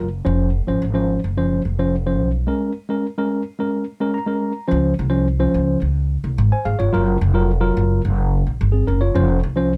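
Joyful and uplifting, this short cut from a longer uptempo 1960s-style soul piece moves at 108 BPM in a straight 4/4, set in Db major with tuning pitched a touch high at A4 = 441 Hz. A tine electric piano carries the accompaniment, its worn, slightly out-of-tune tone lightly overdriven and heard through built-in speakers, sitting up front. Beneath it, an upright bass played pizzicato gives a woody, growly, dark acoustic foundation on steel strings, also placed up front. The harmony opens on Dbmaj7/F and moves to Bbm7 at 2.5 seconds, where a break begins and the electric piano slips in a short fill at 3.9 seconds. A second section arrives at 4.7 seconds, settling on Dbmaj7 and then Gbmaj7 before returning to Dbmaj7/F, all wrapped in a light reverb.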